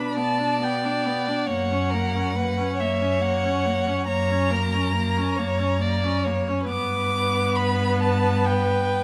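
The first violin carries the melody in a high register, its warm, expressive tone shaped with vibrato and portamento and a smooth top. This is a solemn, elegiac passage from a slow romantic movement for string quartet, cut from a longer piece and moving in a compound metre with a flexible, rubato feel. Beneath it, the second violin holds an even, close-sounding line, while the viola supplies a focused accompaniment that sits distant in the blend, each player bowing with vibrato. The cello enters at 0.2 seconds with a full-bodied, up-front bass, the loudest of the four parts. The harmony shifts at 1.5 seconds and again at 6.7 seconds, and light reverb gives the solo strings a gentle sense of space.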